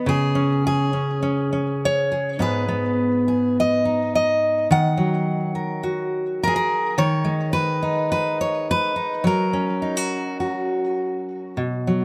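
A full-bodied, jumbo-sized steel-string acoustic guitar sits up front and fingerpicks alone through this gentle, peaceful folk fragment, set at 105 BPM in 4/4 with a loose, rubato feel and tuned to A4 = 441 Hz. Spanning G#2 to F#5 and touched with tape echo, it moves through G#m, D#m, G#m/D# and F# chords in 12 seconds, cut from a longer piece. Close, detailed microphones and light reverb keep the sound intimate and clear.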